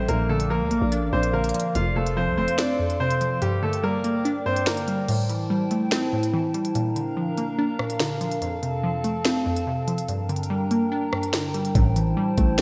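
Cold and tense, this half-time drill excerpt opens with a clear, vintage concert grand piano melody trailed by tape echo, set over a glassy, crystalline wavetable pluck with chorus and a warbling, lo-fi tape-like pad that drifts in its own built-in reverb, while a barely audible downlifter sinks beneath. A growling, buzzy 808-style bass hits at the start, drops out at 2.5 s and returns near the end. The electronic drum kit of knocking kick, sharp snare, crisp hats, rim clicks, finger snaps and crash sits up front, though the kick falls silent from 3.4 s until 11.8 s, all within a dreamy, reverb-soaked hall.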